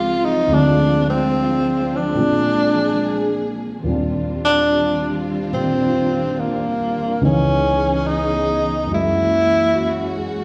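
A breathy tenor saxophone sits up front as the solo voice, playing a tender jazz melody with a hushed subtone, scooped notes and a gentle vibrato shared by the bowed strings beneath it. A dark, mellow concert grand piano accompanies throughout, its deep bass anchoring the harmony. A symphonic string section holds lush, sustained chords with a soft attack and an expressive, close ensemble sound. The slow swing has a late-night intimacy, moving through a Dm7b5 and Bb7 before settling onto an Ebmaj13 at 3.9 seconds, then drifting to Dbm9 and Gb9. A large studio reverb bathes the trio and places the listener further back in the room, giving this cut from a longer piece a soft, enveloping glow.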